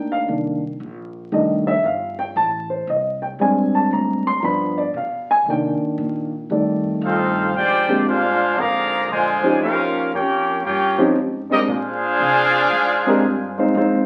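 Swung eighths in 4/4 drive this joyful big band swing excerpt, as a dark, mellow upright piano solos over a woody, growly pizzicato upright bass until, at 7.0 s, a tight, present trumpet section with light vibrato takes the melody above a clear, roomy trombone section's second line, all steeped in a wet large-studio reverb and the crackle of a very old 78 rpm record.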